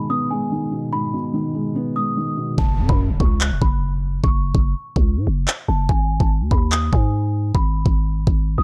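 A dry, close-sounding excerpt of menacing, ominous half-time drill opens with a delicate, bell-like celesta melody over a dark, felt-muted upright piano. At 2.6 seconds the piano drops out as a growling, buzzy 808-style bass and an up-front electronic drum kit of handclaps and knocking kick take over, marked by an electronic impact and a filter sweep. The hi-hats stay muted while the sweet, mellow celesta carries on to the end at 8.6 seconds.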